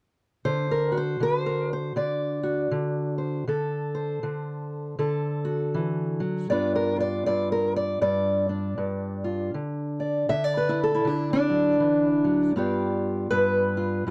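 A dark, warm production with light reverb frames a short stretch of acoustic country blues cut from a longer piece. A single fingerpicked steel-string acoustic guitar carries everything, its boxy parlour tone sitting up front from 0.5 seconds, ranging from G2 up to E5. The mood is rollicking and swaggering at 79 BPM in 4/4, with a swung eighth-note feel that gives the picking its strut. The harmony moves from D7 through G7 and D, returning to G7 at 12.6 seconds, where the guitar steps into a brief solo passage. The playing stops at 14.1 seconds.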